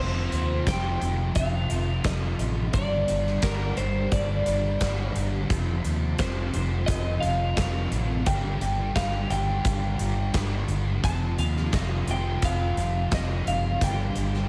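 Shoegaze and dream pop rock, blissful and dreamy, this excerpt from a longer piece is soaked in a moderate hall reverb. A bright, compressed twelve-string electric guitar carries the melody through lush chorus and tape echo over an up-front, dark, distorted fuzz guitar riff with ensemble chorus. A very quiet, scooped twangy electric guitar adds a clean fingered riff, a round, amped fretless bass anchors the low end, and a huge arena drum kit with a punchy kick and rolled-off top enters at 0.3 s as the harmony alternates between F7 and Gm7.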